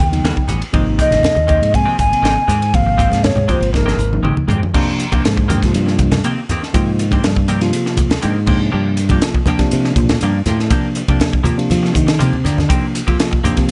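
A straight 4/4 groove at 120 BPM drives this slick, soaring electric jazz fusion clip in Ab major, built on a crisp, up-front drum kit with a punchy kick, high-tuned snare and pumping small-room sound, plus thick-skinned, low-tuned congas sitting in the background. An airy, hollow silver concert flute with vibrato carries the tongued melody until 4.2 s over a mellow tine electric piano and clean semi-hollow guitar stabs bathed in lush chorus. A bright, growly fingered bass then takes a solo from 4.7 s as the harmony moves into Ab lydian, with drum fills marking the turns under light reverb and a rolled-off top end.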